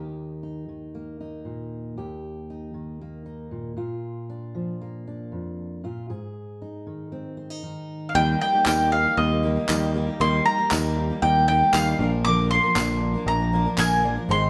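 Anthemic and warm, this straight 117 BPM indie folk cut from a longer piece in Eb major opens with a dark, fingerpicked dreadnought acoustic guitar playing alone up front. At 8.1 s the arrangement builds as a woody, double-strung mandolin takes the melody, joined by a full-bodied jumbo acoustic guitar and a vintage upright piano in the background, its action noise audible, with a round electric bass following at 8.2 s. Crisp group handclaps and a jingly background tambourine arrive at 8.7 s, all set in a large studio reverb with the band playing live in one room.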